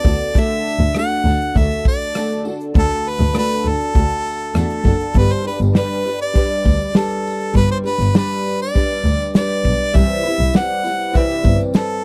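A bright, close-miked harmonica carries the melody up front with light vibrato in this carefree, easy-going acoustic pop excerpt, over a double-tracked, fingerpicked flamenco guitar whose finger squeaks come through. A dark double bass, bowed sul tasto with a soft attack and airy tone, joins at 0.1 s alongside a very quiet, jingly tambourine set distant in a large room, while a natural country drum kit with a tight kick, rim click, shaker and medium-tuned snare keeps a straight 4/4 with a smooth, rolled-off top. The dry, close 1970s-style studio sound moves through D, G at 5.2 s and Cmaj7 at 10.0 s.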